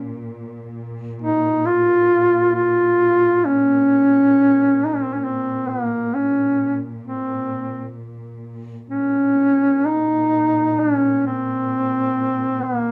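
A solo duduk sings a longing, solemn Caucasian folk lament up front with vibrato and scooped notes over a veiled, muted string section holding a low bowed drone on Bb2, unfolding at a rubato 66 BPM in 4/4 and Bb minor with uneven beats, captured live in one room with light reverb in this 12.9-second fragment of a longer piece.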